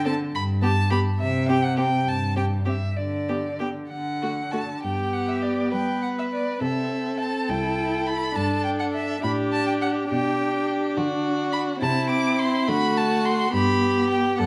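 Close, detailed microphones catch the bows in this short passage cut from a longer piece, set in a moderate scoring-stage reverb that lingers for about 1.6 seconds. It is a quick, lively and graceful classical-period movement for string quartet in G major, moving at 69 BPM counted in dotted quarters in 6/8, with a rubato feel. The first violin carries the melody up front in a rich, focused voice with vibrato, though it sounds slightly distant. The second violin plays a smooth, even second line beneath it, while a warm viola fills in the accompaniment with expressive vibrato and portamento. Up front, the cello anchors the bass with a soft attack, gliding portamento and expressive vibrato. After an opening phrase, a new section begins at 4.8 seconds, and the harmony moves from G through C and D before settling back on G at 13.5 seconds.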